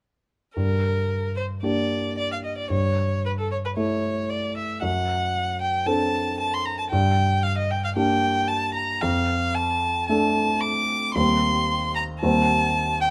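From 0.6 s a rich, smooth, even bowed violin sings the melody with vibrato over a concert grand piano's accompaniment of deep bass and short sustain, both up front in light reverb, in this quick, stormy and dramatic classical-period piano-quartet passage cut from a longer movement.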